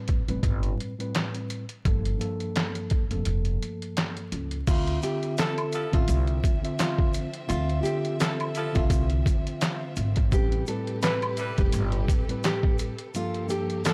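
Dark and gritty, this boom-bap hip-hop excerpt with a swung feel opens on a mellow tine electric piano with cassette-tape colouring, a compressed, pitched-down, muffled sampler drum kit with a thumpy kick, and a woody pizzicato upright bass up front, before a break at 3.3 seconds. At 4.7 seconds a fingerpicked nylon-string guitar takes the melody with audible finger squeak and tape echo, while a lush bowed string section and a saturated tube shaker and woodblock sit in the background. Bright, vibrato-laden jazz saxophone stabs with tape echo join at 5.4 seconds, all set in a dry, small-room sound with vinyl crackle.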